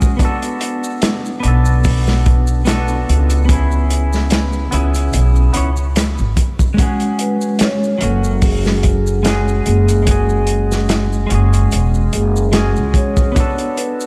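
Trip hop with a cinematic, smoky mood, this excerpt pairs a crunchy, dark breakbeat kit and its punchy kick with a woody pizzicato upright bass that enters at 1.4 s, a twangy clean electric guitar coloured by harmonic tremolo, vintage 12-bit sampler grit and tape echo, and dry maracas in the background, before a mellow soft-mallet vibraphone with tape echo takes the melody from 7.2 s over a Bm7, C#m7 and F#sus2 progression.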